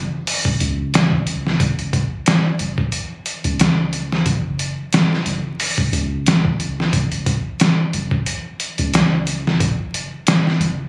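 Hypnotic and brooding, this trip hop fragment sits at 90 BPM in 4/4 with a lightly swung sixteenth-note feel, opening on a deep, round 808-style bass that holds down its low register from the start. At 0.3 seconds a gritty, pitched-down sampler-style drum kit joins, up front with a thumpy kick, medium-tuned snare and hi-hat, its compressed, tape-warm sound carrying a small room ambience. The whole cut feels like a phone capture in a club, with vinyl crackle and a touch of digital reverb.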